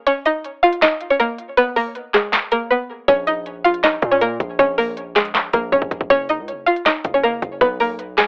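A twangy, string-like resonator pluck colored by chorus and cassette tape carries the melody up front in this dark, brooding half-time trap piece at 159 BPM in Bb phrygian, joined by an electronic trap kit of hard-clipped kick, sharp snare, crisp hi-hats and handclaps that falls silent from 2.7 to 3.1 seconds, when a punchy, saturated 808-style bass arrives, while the recording carries light reverb and a telephone-like home cassette sound.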